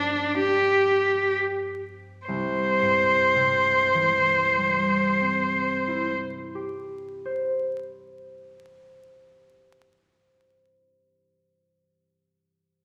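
A reverberant recital hall and a vinyl crackle frame this tender, lyrical fragment of a romantic classical duo in 4/4, played with rubato and cut from a longer piece. Up front, a single bowed cello sings a smooth, rich melody with vibrato as the music slows over an opening G7 and settles onto C at 2.3 seconds, with the cello falling silent at 6.1 seconds. Beneath it, a softer concert harp supplies a mellow, thumb-plucked accompaniment whose ringing notes carry on alone until 10.6 seconds.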